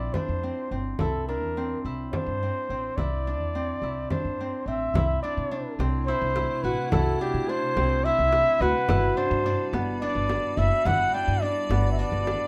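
A close-miked flugelhorn sings a vibrato-laced, jazz-style solo up front over ringing fingerpicked Celtic harp arpeggios, woody pizzicato upright bass and a dry frame drum in this restless, shimmering chamber piece in a brisk 7/8, shifting from C mixolydian to C lydian at 5.0 seconds before an icy, crystalline glass pad with chorus enters at 6.0 seconds beneath a moderate room reverb.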